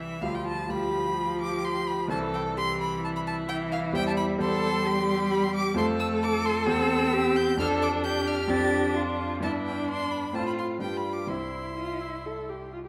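A clear, focused violin sings the melody up front with vibrato over a rich, distant cello second line, an even, smooth-topped viola and a warm concert grand piano with deep bass in this lively, cheerful excerpt from a quick classical-period piano quartet movement in C major at 130 BPM, its harmony moving through F and Dm7/F to G7 before settling on C at 11.3 seconds, set in a reverberant recital hall.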